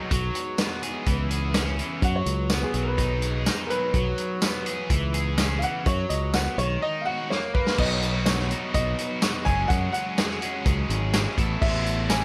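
Carefree and jangly, this indie rock excerpt moves at 125 BPM in 4/4, with a crunchy, double-tracked overdriven guitar riff over a growly, up-front fingered bass and a dark-cymbaled vintage kit with tight kick, snare, hi-hat, crash and tambourine. A very quiet, lush string machine with phaser and ensemble chorus holds sustained chords beneath, while a woody upright piano carries the melody through an analog delay from 2.0 s. A drum fill leads into a shift from B major to B mixolydian at 7.8 s, where the string machine drops out and the band carries on in light studio reverb.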